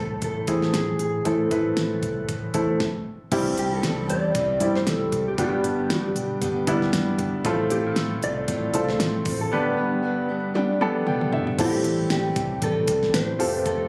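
Piano-driven pop at 116 BPM in 4/4 with a light sixteenth-note swing, this dramatic, earnest excerpt from a longer piece moves from A harmonic minor into A minor. A clear, polished baby grand piano sits up front beside a mellow, compressed electric guitar melody touched with subtle chorus and plate reverb, over a round, foam-muted fingered bass and a produced pop kit with a knocking kick, fat snare and crisp hats. After a brief stop at 2.8 seconds, a dark fingerpicked steel-string acoustic guitar enters in the background at 3.3 seconds, piano and drum fills arrive at 10.6 seconds, and the phone-in-the-room recording carries club reverb and a faint mains hum.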